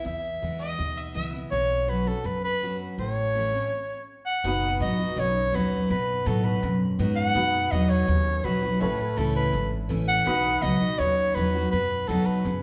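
Honky-tonk and classic country at 165 BPM in B mixolydian, heartfelt and easygoing, carried by a breathy, whispered soprano saxophone melody sitting up front with gentle vibrato over a bright, full-bodied picked dreadnought acoustic guitar (finger squeak audible) and a woody, thumpy pizzicato upright bass. An earthy bowed fiddle adds a brief second line at 0.6 seconds. After a short stop, a jangly, metallic tack piano joins in the background at 4.4 seconds, and a clean pedal steel guitar with volume swells lays sustained chords from 10.3 seconds, all in a live-band feel within a wet, large studio reverb.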